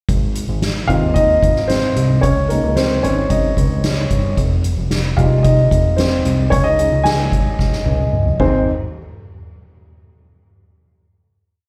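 This piano-driven pop piece is a short, anthemic whole in straight 4/4, captured live through a venue's PA with club reverb. A soft-mallet drum kit sits up front from 0.1 seconds, driving a pop backbeat with a boomy kick, a medium-tuned snare and dark cymbals. A fat analog bass holds down a sustained, round bass line, its saturated, wave-folded tone shaped by a filter sweep. The woody upright piano enters at 0.9 seconds, pushing close-voiced chords through Ab, Dbsus2 and Fm7 with a slapback echo. The featured piano carries the verse, and a drum fill from 7.6 seconds leads into a final hit at 8.7 seconds.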